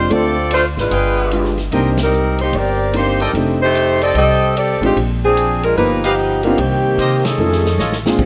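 A mellow, up-front saxophone section with vibrato carries the melody in this joyful, energetic big band swing excerpt at 148 BPM, over woody pizzicato upright bass, a concert grand piano with deep bass and a natural drum kit with a punchy kick, while a bright trumpet section adds stabs from 0.9 seconds, band accents hit at 1.9 and 7.2 seconds, a drum fill closes the passage, and a very quiet trombone section sustains chords only at the very end, with light reverb.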